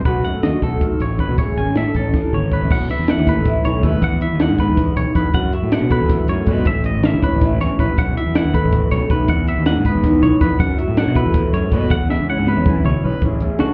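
A round, overdriven fuzz bass sits up front in this playful, intricate math rock and midwest emo clip at 319 BPM in 7/8 and A lydian, joined by a slightly broken-up, lo-fi electric guitar through a small old amp with phaser, a bright, twangy clean guitar picking arpeggios, and a compact cocktail drum kit with a high-tuned snare and punchy kick whose fills land at 2.1 and 12.1 seconds, all heard muffled as if through a wall in a club room over lush chords like Emaj9, F#m9 and B7sus4.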